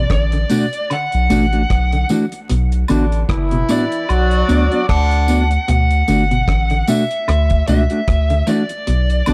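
A deep, round dub sub bass sits up front in this serious, hypnotic roots reggae passage at 75 BPM with a swung sixteenth feel over D and Bm, joined by a dark fuzz lead guitar carrying the tube-saturated melody, a clean semi-hollow electric guitar playing fingered arpeggios, a mellow electric guitar on accompaniment, a tight, dry drum kit of kick, hi-hat and rim click with vintage sampler grit, quiet tambourine and woodblock, and a distant horn section with light vibrato arriving at 2.9 seconds, all in a close, dry mix under a layer of vinyl crackle.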